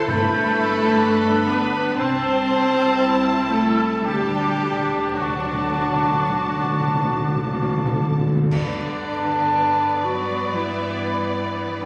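A tender, lyrical slow romantic orchestral movement in G major, moving with rubato at 52-66 BPM, opens with a focused, vibrato-laden violin section carrying the melody over an intense second violin section, a punchy clarinet, a mellow cor anglais, an airy, hollow flute ensemble, lush violas, very quiet French horn chords, ringing harp arpeggios, smooth cellos and double basses, and tight trumpet stabs. Hard-mallet timpani up front play a fill from 4.1 to 8.5 seconds, the horns, cor anglais and flutes drop out near 8 seconds, and dark clash cymbals with concert bass drum strike an accent at 8.5 seconds, the whole passage set in a recital hall reverb with vinyl crackle.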